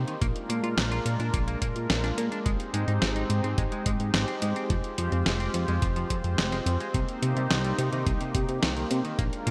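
A detuned sawtooth pad with chorus, tremolo and sidechain pumping opens this nocturnal, driving synthwave excerpt alongside a glossy pulse-width chorused synth bass. A picked, clean semi-hollow electric guitar riff with subtle chorus and delay sits in the background, while a sampler-style 12-bit drum machine's hi-hat and fat snare and a layered, knocking electronic kick drive the straight 4/4 feel through Bb7, Abmaj7, Fmadd9 and Cm7 chords in a bright 1980s-style digital production bathed in a 3.0-second plate reverb.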